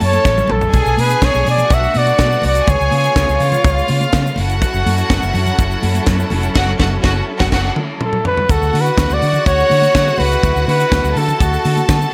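A lightly reverberant small-room sound frames this sultry, danceable disco excerpt at 124 BPM, where a breathy, whispered flugelhorn with slapback echo carries the melody up front from 0.0 to 4.4 seconds and again from 8.0 seconds, over a clear violin section's second line, lush background strings holding sustained chords, a dark, foam-muted vintage fingered bass, a tight funk drum kit with a high-tuned snare and gated reverb that plays fills, thin-skinned congas, and a grainy egg shaker, with a band accent leading into a shift to Dmaj9 at 8.5 seconds.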